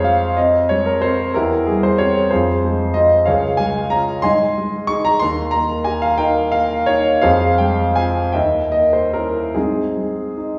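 A polished, up-front grand piano carries this passionate, lyrical romantic character piece alone, its long sustain ringing across a range from Db2 to Db6. The music moves in a rubato 6/8 at roughly 49-63 dotted-quarter beats per minute, unfolding a progression that begins on F minor and passes through Db, Ab and Eb before settling on Ab at 9.5 seconds. A wet recital-hall reverb gives the sound a sense of distance, as if heard from further back in the room, in this short extract from a longer work.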